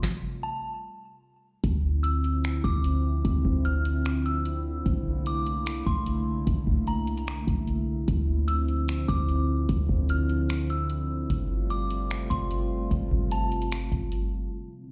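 The sound is big and roomy, as if played through a large system in a bare space and bathed in a large studio reverb. This is hazy, melancholic atmospheric cloud-rap with a half-time feel, cut from a longer piece. A booming analog drum machine opens at the very start with a deep kick, tonal snare, metallic hi-hats and finger snaps, dry and up front, and a delicate FM tine bell soon tinkles a high melody through chorus, a low-pass filter and tape echo. At 1.6 seconds a clean 808-style bass arrives, sine-like, boomy and mellow with a fast attack that decays, and just after, a warbly tape-like pad settles in with nostalgic, lo-fi, detuned sustained chords, dark and full-bodied under chorus, built-in reverb, sidechain pumping and a low-pass filter. The harmony drifts through Dm9, C13 and back to Dm9 before resting on G9sus4, and the pad lingers until 14.9 seconds after the other parts end.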